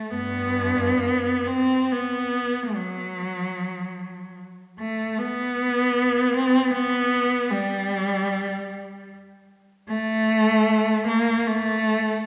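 In free time, this meditative, mournful classical fragment of about 12.3 seconds features a single bowed cello played solo and up front, its rich tone ranging from G2 to C4 with vibrato, soft attacks and expressive portamento, all set in a wet scoring-stage reverb that places the listener further back in the room.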